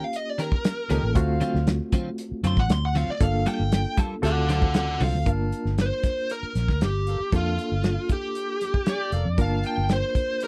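A straight-eighth 4/4 groove at 117 BPM drives this smoky, soulful G minor soul blues. A warm, tight drum kit and a round, foam-muted fingered bass sit up front in a dry room, under a smooth overdriven lead guitar that solos through the first 5.3 seconds. Around them play a barky, reedy electric piano with overdrive and medium tremolo, bright clean guitar stabs bathed in lush chorus that stop at 5.2 seconds, a mellow horn section holding sustained chords with light vibrato, and a dark overdriven slide guitar adding a brief second line from 8.9 seconds, over chords moving from Eb7 through D7#9 to Gm9.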